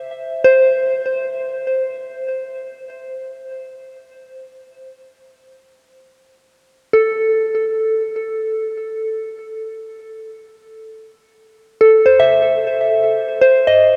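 Floating in free time, this luminous, serene ambient fragment cut from a longer piece features a soft vintage FM synth bell playing alone from 0.0 to 14.0 seconds between A4 and E5, its pure, warbling tones struck with a fast attack and decaying through chorus and delay, sitting up front in a huge, wet reverb, with harmony arriving on A minor at 6.5 seconds and shifting to C minor at 13.0 seconds.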